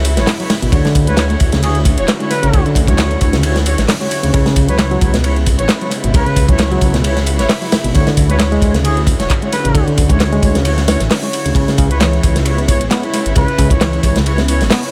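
A dry, raw mix sets a crunchy, saturated breakbeat kit up front, with a tight kick, medium-tuned snare, dark hi-hat and ride, and a rolled-off top. Beneath it, a tape-warm garage kit adds layered handclaps and hi-hat to this funky, swung breakbeat at 133 BPM in C# phrygian. A thick, menacing detuned saw bass sits low, a reedy, lightly overdriven electric piano plays a riff, and brass stabs with dub echo ride over background strings that pump under the sidechain. A veiled, distant bucket-muted trumpet carries a melody with AM radio colour and dub echo, entering at 1.1 seconds as the harmony moves between C#m7 and Dmaj9.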